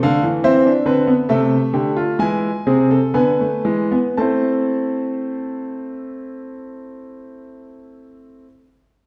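Serious and driving, this short excerpt from a longer baroque-style fugue in four voices is played on a solo concert grand piano in 4/4, slowing down over its first 4.2 seconds. The piano sounds clear and natural, placed up front with a deep bass, spanning C3 to A5 as the harmony moves from F through E7 to A minor at 4.2 seconds. A wet recital hall reverb surrounds the instrument, lending the counterpoint a sense of space.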